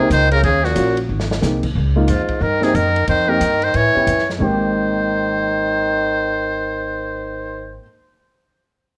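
Jazz in a small-group swing and bop vein, this sophisticated, swinging fragment is cut from a longer piece in 4/4. A buzzy, brilliant trumpet in a metal mute carries the melody up front, with light vibrato and scooped notes set in plate reverb. Beneath it, a veiled, breathy cup-muted trombone traces a soft second line. A dark baby grand piano supplies mellow, intimate accompaniment with short sustain and audible action noise, while a woody, thumpy pizzicato upright bass anchors the low end. An airy acoustic drum kit with a boomy kick sits far back in the mix, plays a fill at 1.1 seconds and stops at 4.4 seconds as the harmony settles onto Abmaj9. The whole recording carries the worn, warbling pitch drift of old cassette tape in a moderate studio room.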